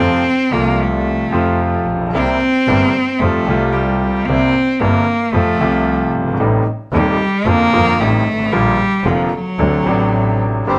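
A bright, biting bowed cello carries a sultry, dramatic tango solo at a rubato 112 BPM, set against a clear, intimate concert grand piano with audible action noise and a rich, nasal bowed double bass in a moderately reverberant large studio, before a reedy, vintage bandoneon slips in at 10.7 seconds just as this fragment of a longer piece cuts off.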